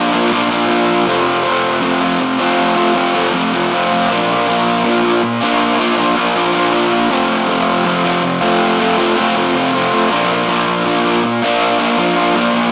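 Rock at 80 BPM in a straight 4/4, dark and cathartic, this short excerpt cut from a longer piece features a lone fuzz guitar playing solo from 0.0 to 12.7 seconds across a range of F2 to F4. The electric guitar is picked, double-tracked and up front, its distorted, warm tone fed through analog delay as it moves between Bb and F chords. A lush hall reverb with a 2.1-second decay gives the sound a big arena scale, tempered by a small-speaker character.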